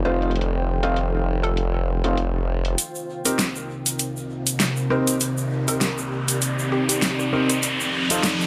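An echo-heavy, softly filtered glitch hop excerpt at 99 BPM in C dorian, funky and gritty with a 16th-note swing, where a huge-snared dubstep kit with metallic hats and a wobbling, up-front formant-sweep bass (only until 2.8 s) drive over a deep detuned analog pad, a blurred granular cloud, mellow worn grand piano stabs with dub echo, and a woody wave-folded pluck melody carrying 12-bit grit, before a grainy tube shaker joins at 2.8 s and a riser from 4.9 s pushes the build-up over Cm7 and back to F7.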